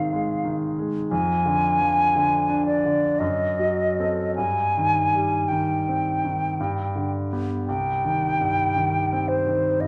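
A romantic classical duo in C minor, elegiac and yearning, moves in a slow, rubato 3/4 at 50-60 BPM as a hollow, pure concert flute sings the melody with vibrato and tongued notes, close and up front, over a brilliant grand piano accompaniment with deep bass and long sustain, both heard throughout this short cut from a longer piece, in a dark production set in a wet recital hall.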